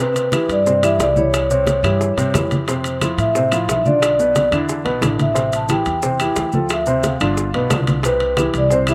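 Recorded outdoors with a touch of light reverb, this lively, danceable Afro-Cuban jazz excerpt opens with a ringing vibraphone, played with medium mallets and its motor off, carrying the melody over an up-front, short-sustained baby grand piano with slapback echo, moving through Cmaj9, Fmaj7, Am7 and G7 before settling on Cmaj7. From 0.2 s the percussion joins: damped, low-tuned congas, metal-shelled timbales with slapback echo and close, grainy maracas, followed at 0.3 s by tight, high-tuned bongos with slapback echo and woody claves tucked in the background. A dark, growly pizzicato upright bass enters underneath at 0.5 s.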